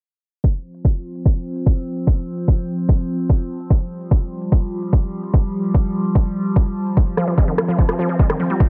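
A punchy electronic kick drum sits up front in this driving, hypnotic psychedelic trance clip, cut from a longer piece at 147 BPM in a straight 4/4, arriving at 0.4 seconds alongside a layered big-room dance kit of crisp hi-hats and rim clicks, both re-recorded in a small room. At 1.0 seconds an evolving wavetable pad enters with sustained, morphing triangle-based chords between F3 and C4, its slow attack and long release colored by chorus, phaser and built-in reverb, and it pumps against the sidechain. The harmony rests on an F5 chord. A filter sweep runs across the whole passage, and the digital ambience carries a low-pass filter. Near the end, at 7.2 seconds, a bright, detuned unison pluck with a fast attack and short decay jumps forward with a sawtooth and wave-folded riff spanning Eb3 to F4, also sidechain pumped and trailed by delay.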